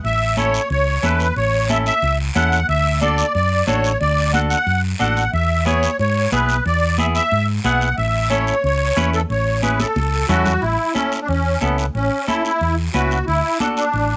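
A reedy, shimmering musette accordion carries the melody up front in this joyful, danceable cumbia at 181 BPM in A major, with a bright, clean picked semi-hollow guitar comping beside it, both colored by cassette tape. Underneath, a dark, round hollow-body short-scale electric bass holds the low end, while high-tuned, thick-skinned congas played with hard hands sit in the background and a raspy, dry guiro scrapes close by, all in a lightly reverberant home cassette recording. The chords move from A through D and E back to A, and a fill at 9.8 s leads into a new section at 10.6 s in this fragment cut from a longer piece.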